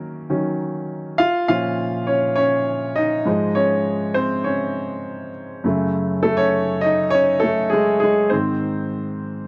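A clear baby grand piano carries this short pop excerpt entirely on its own, sounding present, polished and up front across a range from Gb2 to F5. The mood is warm and anthemic, moving at 101 BPM in a straight 4/4 feel in Db major, tuned to A4 = 439 Hz. The harmony begins on Ebm7, passes through Bbm and Dbadd9/Ab, then moves to Gbmadd9 at 5.7 seconds before arriving on Ab at 8.3 seconds. The sound is dry and close, in the manner of a 1970s studio recording, with a moderate booth ambience and a short decay. Cut from a longer piece, the passage runs about 9.5 seconds as a single section of solo piano.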